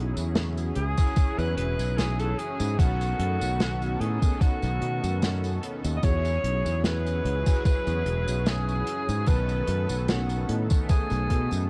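A lightly swung 74 BPM groove in 4/4 carries this dreamy, woozy vaporwave excerpt in E major, where an overdriven, thumpy electronic kick arriving at 1.0 s sits up front beside a growly fingered electric bass, an airy unplugged kit of hi-hat, snare and tambourine played with bundle sticks, a round, detuned synth brass with subtle chorus and cassette grit, and a very quiet warbling tape-like pad holding nostalgic chords, all under a breathy, whispered alto saxophone melody that enters at 0.8 s with tape echo, drifting over slow shifts between E69 and B9.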